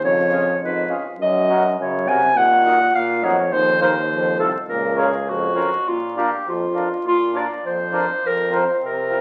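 In a straight, bouncy 2/4 at 103 BPM, this jolly alpine dance band excerpt opens in Bb minor and turns to Bb major at 5.9 s, with chords moving from Db through Gb and Ebm to F7sus4 and F7, resolving to Bbm and then Bb before a closing turn to Fsus4. An up-front clarinet, distant and roomy in a classical style, carries the melody throughout. A punchy euphonium plays a low second line until 5.5 s, while a reedy, full accordion in dry tuning supplies the accompaniment, all heard through a large studio's lingering reverb and the crackle of a very old 78 rpm record.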